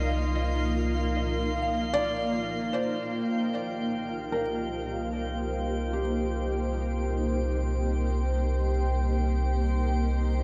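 Melancholic and reflective, this ambient passage in C minor floats in free time, cut from a longer piece and tuned slightly low to A4 = 436 Hz. A round analog bass holds a deep C2 up front beneath a bright granular cloud pad whose blurred, detuned chords hang over the whole stretch, moving from Ebsus2/C to Cm7 at 2.8 seconds. A felt-muted upright piano carries the melody between G4 and Eb5, its intimate tone and audible action noise trailed by delay and shimmer reverb until it stops at 8.7 seconds. A very quiet FM bell plays pure, gentle arpeggios through chorus and phaser until 3.3 seconds, while a glassy texture of drifting overtones sits high between G5 and C6. The dreamy mix is soaked in a huge reverb with a 6.9-second tail and a cassette-tape haze.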